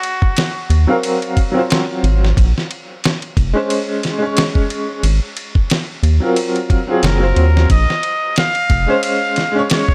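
A nasal, straight-muted trumpet with vibrato and scooped notes drifts through tape echo over a gritty, thumpy sampler-style drum kit, a round analog bass entering at 0.7 seconds, and a woody upright piano with audible action noise, tremolo and echo, giving this brooding, hypnotic trip hop excerpt its echo-heavy small-room haze as Ab13 and Bbm9 chords alternate.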